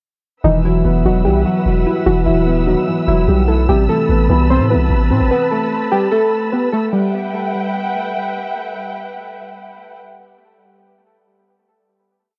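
This is a complete hip hop and trap piece in E harmonic minor, moving at 148 BPM in a half-time 4/4 feel, with a melancholic, eerie mood. Warbly lo-fi synth keys carry the looping melody up front, doubled in octaves and repeated like a sampled loop, their nostalgic, dark tone shaped by chorus, tape echo and a filter sweep. Beneath them, a felt-muted upright piano plays a patterned arpeggio in eighths with a boxy, intimate softness, while a muted studio string section bowed con sordino holds a veiled, lush pad from a distance. A deep 808-style bass lays down long sub-bass notes with pitch slides and drops away at 5.3 seconds. The harmony moves from Emadd9 to Amadd9 through the breakdown before returning to Emadd9 for the final chord at 6.9 seconds, where the strings linger until 10.0 seconds. The echo-heavy mix sits in small room ambience with its top end rolled off, giving the whole track a hazy, lo-fi sheen.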